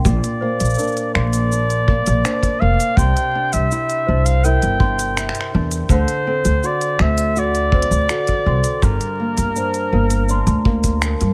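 A straight 4/4 pulse at 82 BPM carries this pastoral, playful folktronica excerpt in C mixolydian, where a punchy, up-front kick drum and an organic electronic kit of finger snaps, smooth hi-hat and shaker sit under a woody, growly pizzicato upright bass, a fingerpicked flamenco guitar with finger squeak, 12-bit sampler grit and delay playing arpeggios, a bell-like large celesta with delay on a second line, and a clear, solo flugelhorn with light vibrato, scooped notes and delay leading the melody over Bb, Cadd9, D7 and Gm, all set in a small room with vinyl crackle.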